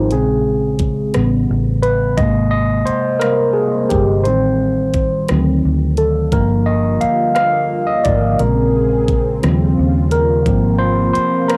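Heard through light reverb and the soft haze of a home cassette recording, this excerpt from a longer piece is a slow six-eight R&B groove at 58 beats per minute, sensual and tender in mood. An overdriven tine electric piano sits up front for the whole passage, its bright, gritty tone pushed through a combo amp and colored by phaser and tape, carrying a solo over lush jazz-tinged changes such as Bbm7, Abmaj9, D7b9 and a closing Ab69. Underneath, a vintage fingered electric bass gives a dark, round, punchy, foam-muted low end. A smooth, produced electronic drum kit with a knocking kick, warm hats and rim clicks, re-recorded in a small room and run through tape, keeps the gentle sway. At 6.3 seconds a mellow, detuned sawtooth analog pad enters with a soft attack and chorus, sustaining chords beneath the piano until the end.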